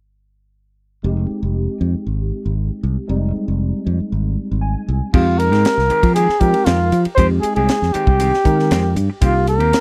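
Driving and intense, this electric jazz fusion at 118 BPM in F minor has a dry, close, 1970s-style studio sound with faint mains hum, opening at 1.0 seconds with a barky, chorused tine electric piano over a growly, up-front fingered bass, the piano adding a fill at 4.4 seconds before a tight funk drum kit with bright cymbals and a high-tuned snare, a compressed semi-hollow guitar placing stabs in the background, and a veiled, bucket-muted trumpet with vibrato carrying the melody all arrive at 5.1 seconds.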